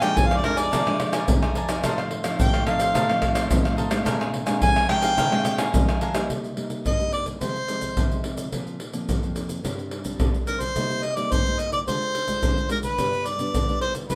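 Moderate studio reverb gives this bittersweet, yearning samba and choro excerpt a roomy sheen, with a mellow harmonica and a percussion kit of tube shaker, pandeiro, tamborim and deep surdo both sitting up front yet sounding distant, the drums struck with hard hands. At 108 BPM in a straight 4/4, the harmonica plays a jazz-style solo over the opening 6.3 seconds, its notes scooped and touched with light vibrato, while a bright, crisply picked cavaquinho and a warm, thumb-plucked classical nylon-string guitar accompany. When the cavaquinho drops out at 6.3 s, the music settles into C minor, and the harmonica, guitar and percussion carry on through a progression that moves from Cm7 to Ddim and G by 14.2 s.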